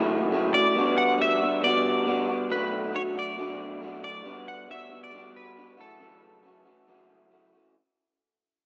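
Restless, moody rock fragment fading out across its whole length, where a slightly broken-up, lo-fi electric guitar through a small old amp plays a chorus-soaked riff up front while a bright, twangy clean electric guitar with chorus and delay carries the melody from 0.5 s, both over F#m7, Gmaj7 and Bm7 chords in a lush hall reverb with the muffled top of a cassette home recording.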